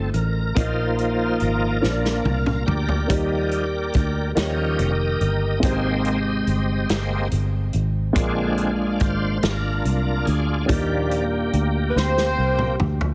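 A bright, shouting tonewheel organ with slow rotary speaker, overdrive and chorus vibrato takes the lead over dark, mellow baby grand piano, round foam-muted fingered electric bass and a punchy natural country drum kit in this reverent, soulful slow gospel excerpt in 6/8 at 47 BPM in Eb major, with drum fills at 1.8 and 12.0 seconds, a brief bright alto saxophone and distant, roomy horn section with octave doubling entering near 12 seconds, all heard dry with a heavily compressed radio sound.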